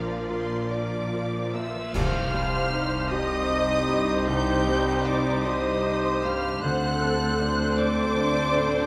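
Bathed in a wet scoring-stage reverb, this moving, bittersweet cinematic film score unfolds in a rubato 6/8. A lush violin section carries the high melody with smooth vibrato over a very quiet second violin line. Beneath them sit a soft, felt-muted upright piano with audible action noise in the background, distant violas, rich cellos, close and focused double basses, very quiet French horn chords and ringing fingerpicked harp arpeggios. A pure, expressive concert flute enters almost at once, a mellow cor anglais and a clarinet slip in from about 1.9 s, and bright clash cymbals with concert bass drum sound from 1.9 to 3.4 s, marking an accent at the start of that span.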